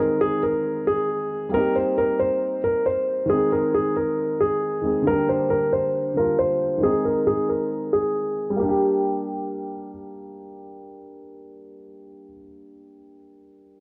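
A shadowy, close studio sound with light reverb and a touch of room ambience frames this short cut from a longer hip hop piece, dark and brooding in mood over a half-time feel in 4/4. A dark grand piano carries the melody in its upper-middle register, its mellow, vintage tone smooth and intimate, with audible action noise sitting up front in the mix. Beneath it, a dark baby grand piano supplies the accompaniment from the low register upward, also placed close, and both pianos are softened by a low-pass filter. A filter sweep runs through the opening 8.6 seconds while the harmony moves among Ab, Eb6 and Gm chords. The melody stops at 9.9 seconds, leaving the accompanying piano alone until it ends at 13.8 seconds.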